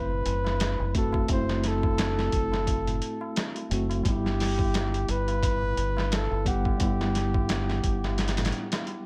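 Hypnotic and brooding, this trip hop excerpt drifts over a swung groove as a veiled, bucket-muted trumpet sings a dark, close-miked jazz melody with light vibrato, bathed in tape echo. A mellow tine electric piano shimmers with tremolo, 12-bit sampler grit and echo, while a round, deep dub fingered bass anchors the shift from F#m7b5 to Em/G at 4.1 seconds. Up front, a compressed, pitched-down sampler-style drum kit thumps with a muffled kick and medium-tuned snare; a high-tuned tabla with short ring sits in the background, all within a digital ambience.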